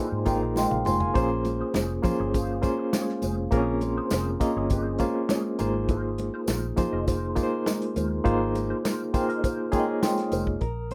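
Lush 1970s-style soul at 101 BPM with a smooth, silky mood, led by a reedy, lightly overdriven electric piano with fast tremolo up front over a dark, foam-muted fingered bass and a dry, tight soul drum kit, while a mellow guitar riff with wah and phaser, airy soft-mallet vibraphone and bright congas sit in the background, a jingly tambourine stays close and dry, and a veiled, cup-muted trombone section adds punchy stabs at 0.3 and 9.1 seconds, with a drum fill at 0.6 seconds and band accents opening and closing this rough, roomy home-demo excerpt.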